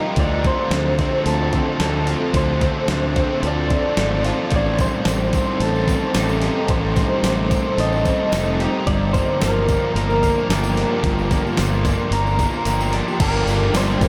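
Soaked in a huge ambient reverb with an 8.3-second tail, this hazy, melancholic shoegaze and dream pop piece, cut from a longer work, drifts at 110 BPM in 4/4 in G minor over Dm7, Am7b5 and Gm7. A dark, thick fuzz guitar with distortion and ensemble chorus plays a riff alongside a biting overdriven guitar carrying reverse reverb, while a very quiet, compressed clean guitar recorded direct picks arpeggios underneath. On top, a slightly broken-up, lo-fi guitar through a small old amp plays the melody, bathed in lush chorus and tape echo. A growly fuzz bass with overdrive anchors the low end beside a crisp 8-bit drum machine with a thumpy kick and fat snare, re-recorded in a small room, and a jingly, close tambourine joins in the background at 4.8 seconds. The kick and snare drop out at 12.7 seconds, and a bright, double-tracked distorted guitar enters with its own riff at 13.2 seconds.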